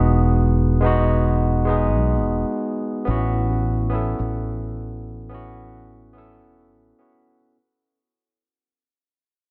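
A lightly swung 4/4 groove at 107 BPM carries this blissful, smooth sunset chillout fragment, where a bright, barky tine electric piano, clean through a combo amp with digital delay, plays the accompaniment over Emaj7 and then A6 from 3.1 seconds, while a growly, electric-toned fretless bass, direct and amped with ensemble chorus and a filter sweep, sits just as up front in the low register until 6.9 seconds, framed by light small-room reverb as the piece fades out.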